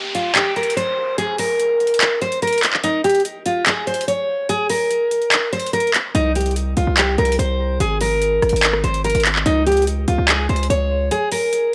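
Hard-hitting, brooding trap hip hop at 145 BPM in a half-time feel, this piece opens with an electronic downlifter and a bright, picked dreadnought acoustic guitar melody, softened by a low-pass filter, over an overdriven trap kit of handclaps, rim clicks and metallic hi-hats. At 6.1 seconds the break ends and a heavy, aggressive 808-style bass enters, a distorted sine with a noise layer, fast attack and decaying tail, under chords moving from C5 to Absus2, before the kick drops out at 11.1 seconds. The sound is dry and gritty, with a cassette-tape character, and the guitar, drums and bass all sit up front.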